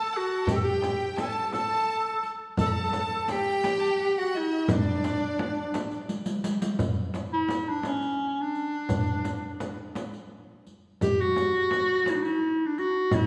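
A bright, forceful clarinet with jazz-style vibrato leads this stately, festive Persian modal ensemble excerpt in 6/8, sounding up front yet roomy, while a lush bowed violin section and a smooth, close solo violin carry a second line until 6.1 seconds; tight, saturated tombak, small frame drum and dark-jingled riq enter at 0.5 seconds, and a drum fill bridges into the second section inside a wet concert-hall reverb.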